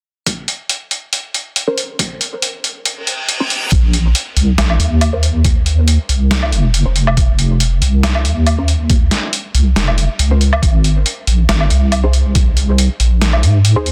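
Deep dubstep in a half-time, lightly swung groove, heavy and meditative in mood, cut from a longer piece. A thumpy, pitched-down electronic kick and a gritty, sampler-style trip hop kit of hi-hat, medium-tuned snare and woodblock open the track; both are compressed, tape-saturated and re-recorded in a small room, and they sit up front. Soon after, a muted, mellow dub chord stab joins, with a detuned sawtooth and pulse-wave tone, a quick filtered pluck, phaser, analog chorus and dub echo, voicing a minor add-nine chord that later moves to a major chord. An electronic reverse cymbal rises at 3.0 s while the kick briefly drops out, setting up the entry at 3.7 s of a deep, dark wobble bass built from detuned triangle and sine tones, sustained, compressed and thickened with chorus, and placed up front. From there, a filter sweep runs across the stab for the rest of the passage, all within a digital ambience and a dense, heavily limited modern master.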